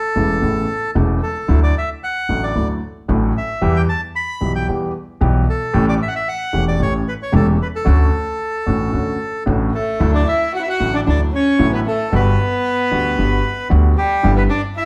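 Set in a wet studio reverb and heard from further back in the room, this elegant, nostalgic tango excerpt in D major moves at 113 BPM in 4/4 with a rubato feel. A reedy, bright bandoneon carries the melody up front over clear, polished baby grand piano accompaniment and a woody, thumpy pizzicato upright bass. At 9.7 s a single warm violin with a gut-string tone, airy bow and light vibrato joins with a period-style second line.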